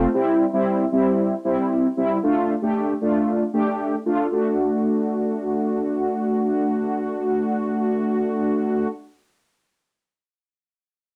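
Pop excerpt at 115 BPM in 4/4 with a nocturnal, cool mood, where a single mellow synth brass part plays accompaniment from G3 to G4 throughout, its brassy, round, detuned sawtooth tone dark and evolving under a filter sweep, with fast attack and sustained notes, sitting up front with chorus and cassette tape coloring in a wet studio reverb, over chords moving from C to Dm and then to D at 4.3 seconds.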